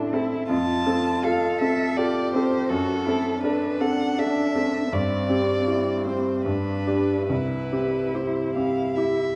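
In an unhurried 3/4 that breathes with rubato around 70 to 84 BPM, this brief passage from a slow romantic classical movement sits in C major and carries a warm, lyrical mood. A bright, brilliant baby grand piano sits up front with the accompaniment and is the most present part, while a focused, smooth-topped cello sings a second line beneath. The violin enters at 0.5 s with the melody, bowed with a soft attack, expressive vibrato and gentle portamento. The harmony moves from F through D7 over F sharp and C over G, reaching G at 6.5 s before settling on C at 7.3 s. A reverberant recital hall and a dark production give the whole a soft glow around the players.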